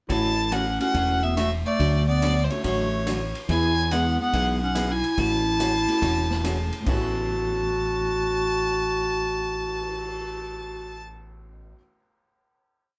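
A short, wet studio reverb and a live one-room sound frame this playful, swinging western swing piece at 142 BPM in A major. A clear, focused bowed fiddle carries the motif-based melody up front over a breathy clarinet's harmony line, mostly in thirds. A warm fretless electric bass plays two-beat root and fifth, a clean hollow-body jazz guitar supplies four-to-the-bar rhythm in the background, and a big-band drum kit with a punchy kick keeps a ride cymbal pattern. A dark, woody upright piano enters at 0.8 s with very quiet syncopated comping, and the band settles onto a final chord from 6.9 s.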